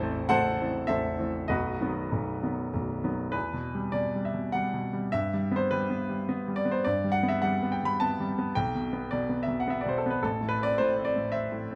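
Classical romantic character piece for solo piano in E minor and 3/4, brooding and passionate, moving with rubato at 96-109 BPM, its clear, natural baby grand sitting up front with short sustain under light reverb and close, detailed microphones, spanning A0 to B5 as the harmony passes from Am and B into an Em-to-G passage at 3.4 seconds, a bare moment at 8.5 seconds, and an Amadd11 at 10.2 seconds in this fragment cut from a longer piece.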